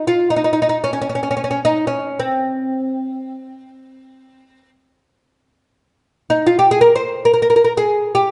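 Unmeasured and free in time, this short excerpt from a longer Arabic maqam ensemble piece unfolds with a melancholic, soulful mood. A lone acoustic oud carries the whole passage as soloist, playing from 0.0 to 8.3 seconds within a range of C4 to C5. Its plectrum-plucked double strings sound bright and woody, and the fretless instrument sits up front in the mix. A slapback echo trails the oud. Around it, a moderate recital hall reverb adds a sense of space, and the sound holds nothing above 10.9 kHz.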